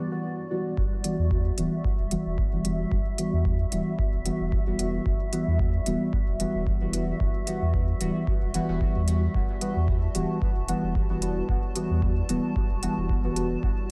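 A granular cloud pad and a deep, mellow chord stab open this meditative, nocturnal dub techno excerpt together on an Emadd9 chord. The pad sits far back, a blurred, evolving haze with a slow attack, long release, built-in reverb and a grain of vintage 12-bit sampler grit. Up front, the dark stabs decay through chorus, phaser and dub echo, a filter sweep and moving notch shifting their detuned tone. At 0.8 seconds a round, sine-like sub bass with tube saturation arrives alongside a deep analog kick drum, and smooth, layered hi-hats follow at 1.0 seconds, riding a gentle 16th-note swing. Sidechain pumping makes the pad, stabs and bass breathe around the kick, all within a digital ambience that holds the groove in a late-night stillness.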